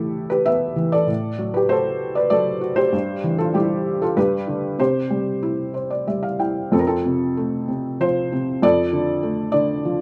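The recording sounds close and intimate, with a felt-muted upright piano placed up front in a moderate studio reverb, its notes carrying a short, natural sustain. This is a relaxed, hopeful piece of lyrical classical solo piano in a gentle three-beat metre, played with a flexible rubato feel. The piano's soft, mellow tone spans from its low register up into the upper middle, moving through suspended and extended harmonies such as Asus2, Am13 and G13sus4 before settling on G and then C. A brief piano fill at 5.4 seconds leads into a new passage at 6.7 seconds, where the harmony moves to F and then Dm over an F bass. The whole passage is a short section taken from a longer piece.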